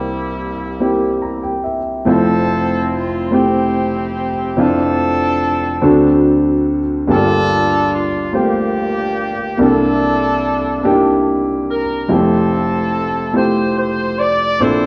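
A live-in-the-room sound, bathed in lush studio reverb, carries this brief, jubilant and reverent gospel passage in a slow 6/8, where an intimate grand piano, up front with its action noise audible, lays down rich extended-chord accompaniment and a fill from 0.8 to 2.0 seconds, while a warm, roomy horn section sings the melody with light vibrato before the phrase settles onto a lush major-ninth chord at 12.1 seconds.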